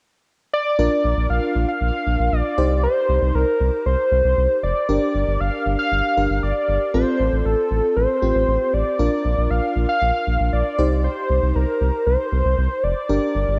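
A straight 4/4 pulse carries this nocturnal, cool synth-pop fragment, where a thick, detuned, wave-folded unison lead with vibrato takes the melody from 0.5 seconds, a dreamy, chorused FM electric piano with a soft pad layer and a deep, round analog bass sitting up front join at 0.8 seconds over chords moving from Bb through Cm, Gm and F/A, and the whole mix is bathed in a lush hall reverb and the worn, warbling pitch drift of old cassette tape.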